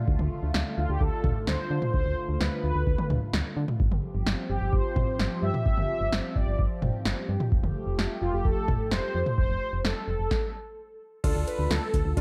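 Synth-pop with a melancholic, nocturnal mood, set in a straight 4/4 and cut from a longer piece. A swirling, detuned sawtooth pad treated with phaser and chorus sustains chords from the start, moving through Dm, G7sus4 and Fadd9. Beneath it, a round, dark FM bass with a fast, decaying attack pairs with an up-front analog drum machine whose deep kick, punchy snare, metallic hats, toms and crash are tape-warm and bathed in gated reverb. From 0.8 seconds a mellow, brassy synth lead carries the melody, its detuned sawtooth tone shaped by a filter sweep, vibrato and chorus. The music breaks off at 10.3 seconds, and at 11.2 seconds a clear, polished baby grand piano enters in accompaniment as the Dm chord returns, all within a dry mix that has little room reverb.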